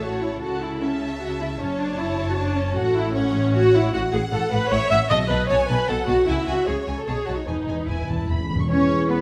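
In a quick, straight 3/4 at 153 BPM, this cheerful, graceful classical-period orchestral fragment settling into E major finds lush bowed violins carrying the melody and a second line over an up-front viola accompaniment, a warm cello section and rich double basses, with close timpani entering at 5.1 s and filling from 7.5 s before a clear oboe, dark clarinet, airy flute and mellow French horn chords join at 8.7 s, all in a recital-hall reverb.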